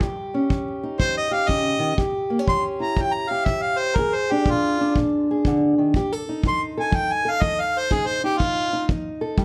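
Acoustic country blues with a rollicking, soulful swing, where a dark, boxy fingerpicked parlour guitar with fresh strings and audible finger squeak sits up front beside a tight, rolled-off kick drum with brushes in a small room, as a clear, jazz-style harmonica solo enters at 1.0 seconds with vibrato, scooped notes and plate reverb, over a short cut moving from Eb7 through Em6 and Bb7 to F7.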